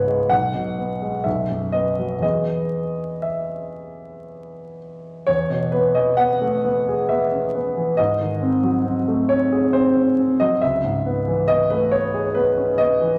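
A romantic classical character piece for solo piano in E major, this passionate passage from a longer work unfolds in a rubato 3/4 at about 58-70 BPM, the grand piano up front and intimate with its action noise audible as it moves through harmonies from B to E and later G#7 and C#m7, all set in a wet recital-hall reverb beneath a vinyl crackle.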